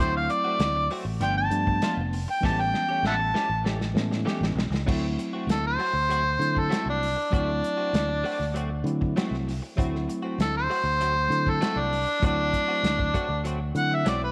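An overdriven, gritty harmonica leads this laid-back, soulful excerpt of straight-eighth soul blues at 98 BPM in D mixolydian, playing up front with light vibrato, scooped notes and tongue slaps over a mellow tine electric piano, round fingered electric bass and clean, compressed electric guitar stabs with analog chorus. A dark, smooth soul drum kit with a punchy kick and rolled-off top joins at 0.3 seconds and plays a fill from 2.4 to 4.9 seconds as the chords move through D7, G7 and A7. A moderate plate reverb gives the mix a gentle sheen.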